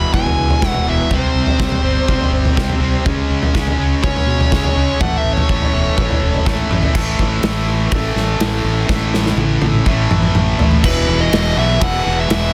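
Quiet-loud alternative rock with a bittersweet, restless mood, cut from a longer piece, where a nasal lead guitar with a parked wah plays an overdriven solo melody over a bright, double-tracked distorted riff, dark lo-fi fingered arpeggios in the background until 7.0 seconds, a growly fuzz bass and a loose acoustic drum kit with a pumping small-room sound and tight kick, whose fill at 8.9 seconds leads to the lead guitar's return at 10.9 seconds, in a dense, heavily limited master with little reverb.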